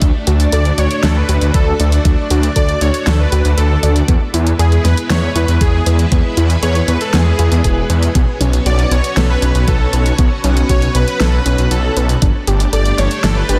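A thick, detuned saw bass sits up front in this romantic, dreamy synthwave excerpt, its saturated unison tone pumping against the beat under a steady 4/4 pulse. A knocking, overdriven electronic kick drives the groove until 12.3 seconds, joined throughout by a layered pop kit whose fat snare and warm hi-hats carry their own grit. Over this, a vintage string machine spreads lush, slow-attack chords with a bright ensemble chorus, while a dark, warbling pluck traces arpeggios through chorus and delay in the background. From 0.5 seconds a smooth supersaw carries the melody in its upper register, trailed by digital delay. The chords move from D to E, then to open suspended shapes on B and G, all set in a light digital ambience and a dense, heavily limited modern master.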